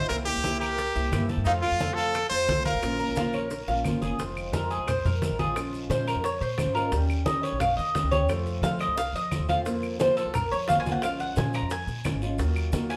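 A live band fills a large studio with a wet reverb in this danceable, warm excerpt of Cuban son and guajira. A brilliant, forceful trumpet with vibrato leads up front until 3.8 seconds, and then the metallic, double-strung tres takes a picked solo from 4.2 seconds to the end. Beneath them, a boxy fingerpicked archtop guitar with audible finger squeak and a woody, thumpy pizzicato upright bass carry the chords, while bright low-tuned congas, tight bongos, woody claves, a raspy saturated guiro and grainy maracas keep the groove, with brief percussion fills along the way.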